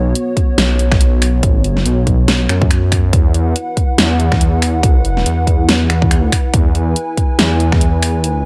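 A dark analog pad and a detuned saw bass open this brooding, meditative deep dubstep excerpt together. The pad holds sustained chords with a slow attack, its moody square, sawtooth and triangle layers thickened by a sub octave, ring modulation and chorus. Beneath it, the bass rumbles deep and saturated, its unison sawtooth and sine tones beating against each other with a fast attack. From 0.2 seconds a dubstep kit of finger snaps, hi-hat and a huge snare sits up front, and a punchy electronic kick enters at 0.4 seconds, both sounding produced and re-recorded in a small room. At 141 BPM in 4/4 with a half-time feel and a 58% swing on the 16ths, the harmony moves from B5 to Eadd9 at 3.1 seconds, tuned to A4 = 436 Hz, in a dry mix with little reverb.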